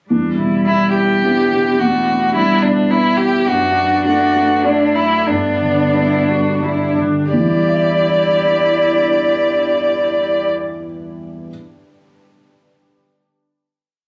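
Melancholic and fragile, this short neoclassical piece in E minor drifts in rubato 3/4 between 85 and 108 BPM, as a dark, veiled con sordino violin carries the melody up front over a thick-felt upright piano's rocking two-note bass chords, a muted cello's lightly vibrato second line and a background viola's independent inner lines, while a very quiet, detuned sawtooth pad enters at 1.1 seconds, the music slowing from 2.6 seconds through Em7, D/F# and G before settling on a final Em7 chord at 7.3 seconds, all heard as a phone recording in the room with club reverb and compression.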